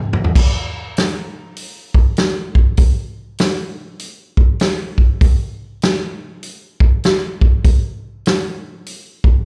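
Rock drums in a heavy, gritty vein, taken from a longer piece, roll along at 99 BPM in 4/4 with a swung eighth-note feel. A vintage acoustic kit of kick, snare, hi-hat, toms and crash cymbal plays from 0.1 to 9.3 seconds, opening on a short fill, with a punchy kick, a medium-tuned snare and a rolled-off top end set up front. The sound comes across as a live club gig through the venue's PA, with the kit itself carrying a natural studio-room character and little reverb.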